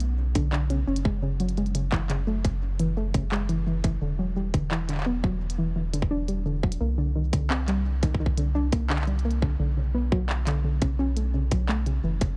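IDM at 86 BPM in a straight 4/4, this short excerpt from a longer piece feels intricate and glitchy, moving through chords from Bm to F#7sus2, E7sus2, Cm9 and Bm9. A round, deep analog bass and a glitchy kit of clicky hi-hats and handclaps start at once, with a tight, up-front electronic kick and a warbling, lo-fi pluck arpeggio joining at 0.4 seconds, the pluck colored by chorus and tape echo. The production is dark with light reverb, and the pluck's nasal, dusty bite sits up front alongside the bass.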